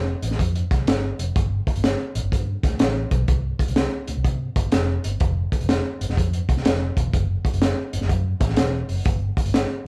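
A muted, round electric bass opens this uptempo 1960s-style soul passage, with a crunchy breakbeat drum kit joining at 0.2 s. The tempo sits at 125 BPM in 4/4 with a swung eighth-note feel, and the music stays in C major through a single section, carrying a warm, uplifting mood. The fingered bass has a dark, foam-muted, amped tone with a punchy attack, ranging from E1 up to C3. The drums sit up front, with a punchy kick, a high-tuned snare and hi-hat, all carrying a gritty, saturated character, a rolled-off top end and a small-room sound. The band sounds as if it is playing live together in one room, wrapped in moderate studio reverb, and the passage is cut from a longer piece, ending around 9.9 s.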